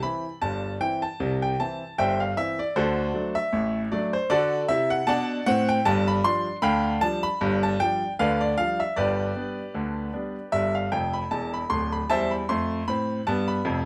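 A clear, intimate baby grand piano carries this cheerful, lively ragtime excerpt alone in C major at 77 BPM in a swung 2/4, its up-front sound showing audible action noise under light reverb in a live room as it moves from C through D7 and G7 to G, with a fill from 10.9 to 12.1 seconds before landing on C/E.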